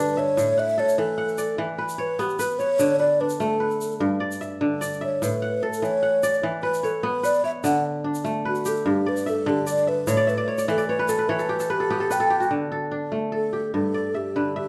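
Joyful and warm, this short West African traditional passage in a straight 12/8 is led by a breathy, hollow alto flute carrying the melody with vibrato and a crisp attack through its solo up to 12.5 seconds. Underneath, an up-front kora rings out fingerpicked arpeggios and adds a fill from 10.1 seconds. A grainy, compressed tube shaker sits quietly in the background until 12.5 seconds, all set in a moderate recital-hall reverb.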